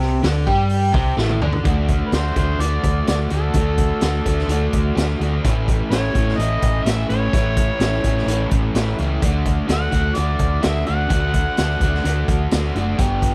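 A crunchy, bright, double-tracked overdriven guitar riff opens this gritty, raunchy blues rock and southern rock excerpt, up front over a dark, round hollow-body short-scale bass and a raw garage kit with a high-tuned snare, boomy kick and saturated, rolled-off top, all set in a dry, close 1970s-style small room. A drum fill at 1.2 seconds leads into the main section, where the chords move from D to A and back to D. At 2.1 seconds an amplified, punchy overdriven harmonica takes the solo melody with tongue slaps, carrying it until 12.2 seconds.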